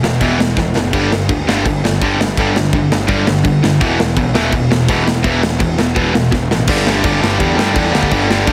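This short, rowdy punk rock fragment is led by a bright, double-tracked electric guitar, picked with overdrive and pushed up front as it hammers out a low riff built on E5 and G5 power chords. Beneath it, a fuzzed, picked electric bass adds a punchy, overdriven growl that sits a little lower in the mix. A big acoustic rock drum kit drives the straight 4/4 pulse with a punchy kick, a medium-tuned snare and bright crash cymbals, rolling through quick fills near 0.6 seconds and again just before 6.7 seconds, where the music shifts into a new section. All three parts play throughout the clip, which is cut from a longer piece. Light reverb and heavy compression give it a loud, squeezed, radio-ready sound that keeps the energy relentless.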